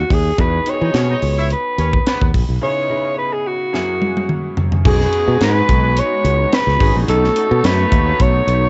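Dry, lo-fi cassette sound with a dulled top end frames this breezy, urban 1980s jazz-funk pop excerpt in B major at 107 BPM with a light swing, where a raspy, growling alto saxophone carries the melody up front over a punchy, growly fingered electric bass, a crisp fusion drum kit with a high-tuned snare that plays a fill before the second section, and a brilliant, chorused grand piano, while a distant horn section adds a second line from 0.8 seconds and a hollow, flute-like, warbling pad joins with sustained chords at 4.9 seconds.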